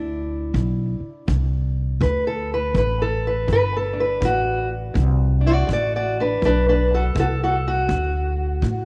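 Opening at once on a D7 chord, this laid-back, rollicking excerpt of acoustic country blues at 82 BPM with a swung feel features a fingerpicked steel-string parlour guitar, boxy and up front, carrying the melody over a woody, thumpy pizzicato upright bass, while a punchy kick drum played with brushes joins at 0.5 seconds, all in a small room with light reverb.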